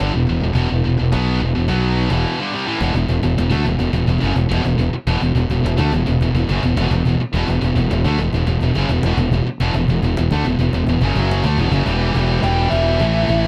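A straight, steady 4/4 pulse drives this dark, heavy metal excerpt, cut from a longer piece. Two high-gain distorted guitars pick a low riff throughout: one bright and up front, the other scooped. Beneath them, a growly fingered electric bass with fuzz and overdrive sits prominently in the mix. A woody, compressed cajon with faint snares joins at 0.6 seconds and stays in the background. After a short break at 2.2 seconds, the riff shifts to a power-chord passage, and a darker lead guitar with slapback echo enters high at 12.4 seconds. The sound is dry and close, like a 1970s studio recording.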